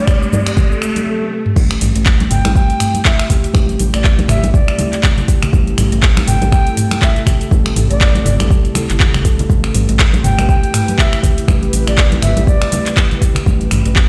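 Afro house at 121 BPM in A minor, driving and earthy, where a short build-up of riser, swell and a drum fill drops at 1.6 seconds into a groove of deep overdriven electronic kick, an up-front afro-pop kit with metallic hats, finger snaps, handclaps, shaker, toms and crash, soft background congas, a round wave-folded analog bass pumping under the kick, buzzing woody kalimba arpeggios with tape echo, an ethereal detuned pad in the background, and a bright, reedy concert flute melody with vibrato that stops at 13.0 seconds, all ringing in a stone room over chords moving from Am7 to Cmaj7 and Dm7.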